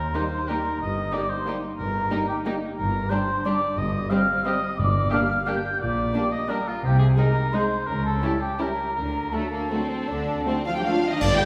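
Veiled, con sordino violin sections carry the melody and a second line in this sweeping, elegant excerpt from a G minor orchestral ballroom waltz in 3/4, moving with rubato between 148 and 195 BPM, as a hollow flute ensemble and a distant oboe add second lines, a muted viola section supplies the accompaniment, soft-attack French horns hold sustained chords, dark cello and double bass sections anchor the bass, round soft-mallet timpani enter at 3.8 seconds, a cymbal swell with bright clash cymbals and concert bass drum arrives at 9.0 seconds, and a tuba lands on a final accent at 11.2 seconds, the orchestra heard from further back in a wet scoring-stage reverb.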